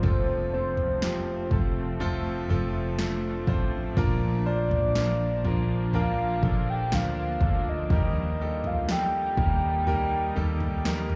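A tender, emotional pop ballad in Bb major at 61 BPM opens with everything at once: a soft, round synth lead with a sub-octave layer, chorus, vibrato and slapback echo carries the melody over a clear, intimate grand piano whose action noise is audible, while a cloudy, evolving granular pad glows in the background. Underneath, a woody, hollow-sounding fretless bass with analog chorus sits up front beside a deep house kit of deep kick, punchy overdriven snare and toms, moving through F, Bb and Eb chords. The short excerpt sounds like a live gig heard through the venue's PA, with club reverb and a muffled top end, and the lead drops out at 10.9 seconds, just before the rest stops at 11.2.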